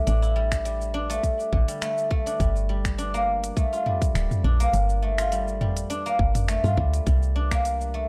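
Silvery, ringing guzheng arpeggios played with fingerpicks and fed through analog delay open this mystical, meditative organic downtempo excerpt at 103 BPM in G dorian, joined almost at once by a round, dark, woody FM bass up front and a tape-warm electronic kit of cabasa, finger snaps, smooth hi-hat and toms, with a tight electronic kick entering at 0.5 seconds, all gently swung on the 16ths over A7(no3), Gm7 and C7(no3) chords, with light reverb on a dry, gritty recording.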